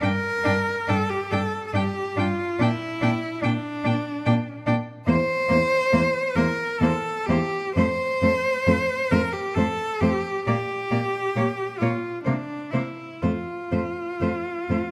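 Serene and warm, this classical passage for a cello ensemble in F major is cut from a longer piece and unfolds in a lyrical 3/4 with a flexible rubato pulse, drifting between 59 and 74 BPM. Four bowed cellos, one player each and all shaded with vibrato, play throughout its roughly 15 seconds. The melody sits highest, a clear, even, smooth voice that sounds distant and set back in the background. Beneath it, a focused, close second line stands up front, while a rich accompaniment part with a smooth top fills the middle, and a woody bass cello anchors the low end. The harmony moves from G minor through C7 to F, passes through a chordless moment at 10.5 seconds, then settles back through C7 to F at 13.2 seconds. Light reverb and close, detailed microphones frame the ensemble, though lossy compression artefacts are audible.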